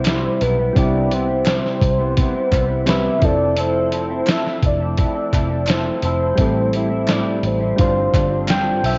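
This short excerpt sounds like a home recording on cassette, dulled at the top end and washed in a moderate spring reverb, with a nostalgic, laid-back indie and bedroom pop mood in a straight 4/4. Up front sits a compressed, pitched-down sampler-style drum kit with a thumpy kick and a medium-tuned snare, while a foam-muted picked electric bass adds a round, tube-saturated low end. A dark, clean electric guitar played with the fingers drifts in pitch under ensemble chorus, and gentle electric-piano-like synth keys with a warbling, mellow tone share the accompaniment, adding a short fill from 8.1 seconds. Above them, a full-bodied octave-layered synth lead carries the melody with vibrato, phaser and analog delay until 8.5 seconds, as a very quiet, detuned tape-like pad holds sustained chords beneath. A faint, crisp group handclap sits in the background, and the harmony moves from Cmaj7 through Fmaj7 and Am7 to a closing G7sus4.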